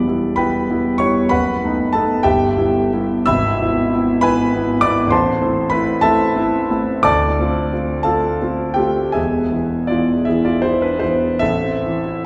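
A warm, intimate concert grand piano sits up front with deep bass and audible action noise, playing a bittersweet, passionate romantic character piece in 6/8 at 46-67 BPM in dotted quarters with free rubato, drifting from E minor harmonies into A minor from 3.3 s and moving through Am, Dm7 and E before settling on Am at 11.4 s, all within a lush recital-hall reverb in this brief passage cut from a longer piece.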